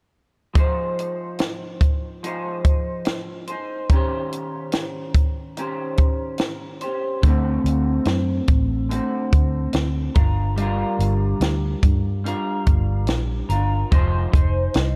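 A straight, unhurried 4/4 pulse comes from a compact cocktail drum kit, its dry, natural sound up front with a high-tuned snare, punchy kick and hi-hat. This wistful, lonely bedroom-pop cut from a longer indie pop piece opens on an electric guitar through a small old amp, bright, twangy and slightly broken-up, with subtle chorus and vibrato as it picks through Fm7, Eb6, D7 and Gm7 before circling back to Fm7. At 7.2 seconds a vintage muted fingered electric bass joins, dark, round and foam-muted, up front in the mix. Near the end, at 14.4 seconds, a soft, hollow, clarinet-like synth lead enters quietly with a woody, sustained tone, an ensemble chorus and slapback echo. The studio ambience lends the small group an intimate, room-like feel.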